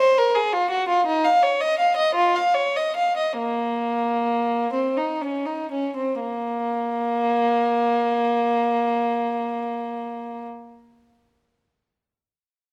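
Heard through close, detailed microphones in a recital hall with a moderate reverb of about 1.6 seconds, this short excerpt of a baroque-style suite movement places a single unaccompanied violin up front. The mood is grave and introspective, in Bb minor at a tuning of A4 = 444 Hz, moving in a rubato 6/8 at roughly 39 to 57 beats per minute counted in dotted quarters. The bowed violin has a period-style, gut-string tone, nasal and reedy, touched with light vibrato, and it ranges from Bb3 up to F5. The opening phrase slows down through its first 6.2 seconds before a second section begins. The violin's playing ends at 10.5 seconds.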